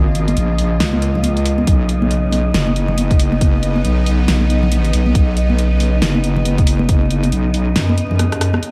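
Loud vinyl crackle sits over this brooding, heavy deep dubstep excerpt at 138 BPM with a swung half-time feel. A saturated, up-front square-and-sine wobble bass with chorus anchors a Bbm chord that shifts to Badd9 at 1.7 s, while a tense, detuned sawtooth string-like drone with phaser and vibrato and an airy, breathy wind-like noise texture hover behind it. A tape-warm deep house kit brings hi-hat, rim click and fat snare, soft-handed congas with dub echo sit in the background, and a deep electronic kick plays from 1.7 to 7.0 s before a drum fill closes the drop at 8.2 s.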